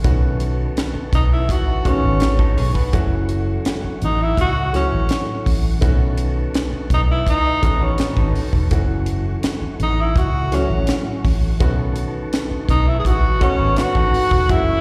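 A light-vibrato tenor saxophone carries the melody up front from 1.1 seconds, its distant, roomy tone touched with slapback echo, in this smooth, cinematic slice of lush 1970s-style soul at 83 BPM in 4/4, moving between B9 and F#m7. Beneath it, a dry funk kit with a high-tuned snare and tight kick sits forward alongside a dark, foam-muted, round and punchy fingered electric bass, while an intimate grand piano with audible action noise and slapback echo plays accompaniment and a mellow, flute-like tonewheel organ holds sustained chords in the background through a slow rotary speaker and chorus vibrato. A slightly broken-up, lo-fi electric guitar through a small old amp drops in short riffs, first at 2.4 seconds, and the whole sounds like a live gig heard through the venue's PA with recital hall reverb.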